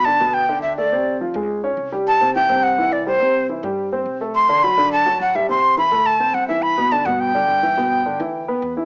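A breathy, bright jazz flute with vibrato sings the melody up front over an intimate warm grand piano with audible action noise, both colored by cassette tape and plate reverb, while a woody, thumpy pizzicato upright bass sits in the background, giving this short Afro-Cuban jazz passage in G major a sunny, sophisticated feel at a brisk 210 BPM in a homespun, small-speaker sound.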